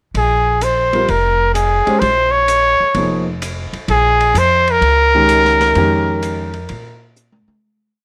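Lightly reverberant and brief, this intense, searching modal jazz piece sets a present trumpet with vibrato spinning motif-based phrases over woody, gut-strung pizzicato upright bass in a two-feel, while grand piano enters at 0.9 seconds with syncopated quartal comping and a small-room drum kit with dark cymbals keeps a stick ride pattern through a fade-out from 5.8 seconds that ends on a drum fill at 7.2 seconds.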